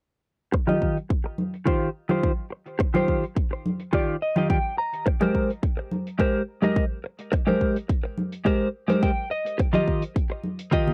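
A clean, direct-recorded electric guitar leads this feel-good nu-disco excerpt, playing a picked, compressed riff up front with analog chorus, a low-pass filter and a cassette-tape coloring, adding short fills around 3.9 and 8.7 seconds. Beneath it, a punchy, layered electronic kick drives a straight 4/4 groove at 106 BPM in Eb major, sitting forward in the mix while a filter sweep runs across the drums. A dry, airy hi-hat ticks quietly in the background, softened by low-pass filtering, and low-tuned congas with a thick-skinned, small-room tone add a groovy acoustic pulse from 0.7 seconds. The harmony moves from Eb69 to Abmaj9 and settles on Ebadd9. Light reverb and a homemade cassette character give the short clip a cozy, lo-fi sheen.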